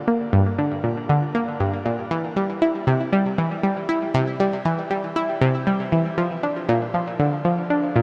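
Expansive and hypnotic, this ambient fragment from a longer piece moves at 118 BPM in a straight 4/4, with a lone round, nasal, detuned analog pluck playing from 0.1 to 8.0 seconds between G2 and E4, its fast attack and short decay coloured by chorus, phaser and delay and set up front in a wet shimmer reverb that rings for 7.3 seconds.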